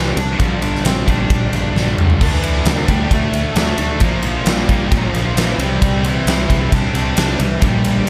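Angsty and dark, this short cut of quiet-loud alternative rock combines a dark octave-fuzz lead guitar melody with picked fuzz and high-gain rhythm guitars riffing with slapback echo in the background, a growly overdriven fingered bass, and a huge up-front arena drum kit with a fat snare and punchy kick whose fill at 1.8 seconds ushers in a barely audible shimmering string machine at 2.2 seconds over chords moving from Gm/Bb through Dsus2 and Bb to C in a small room.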